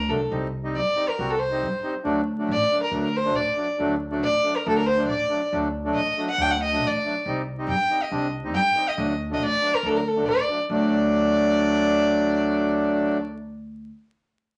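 A rich, floating solo violin, bowed sul tasto with a soft attack, carries a soulful, festive klezmer melody up front in a straight 2/4, over reedy, boxy accordion accompaniment and a woody, growly pizzicato upright bass that lingers alone until 13.9 seconds, all wrapped in studio reverb and vinyl crackle in this excerpt cut from a longer piece.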